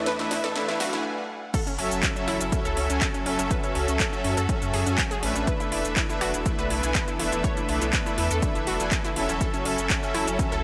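Progressive house with a driving, bittersweet mood, this excerpt opens on a short build-up where bright, vibrato-laden strings hold sustained chords in the background, smooth detuned supersaw stabs sit up front with tape colour, delay and sidechain pumping, and a background riser and drum fill from the house kit run until 1.0 s before a brief stop. At 1.5 s the drop lands with a punchy overdriven kick, and soon a deep, thick, mellow sub bass enters under a lush, punchy unison pluck playing delayed arpeggios. The up-front kit brings a cracking snare, metallic hats, claps, snaps, shaker and crash, all set in light reverb over chords moving between F#m7 and E7sus4.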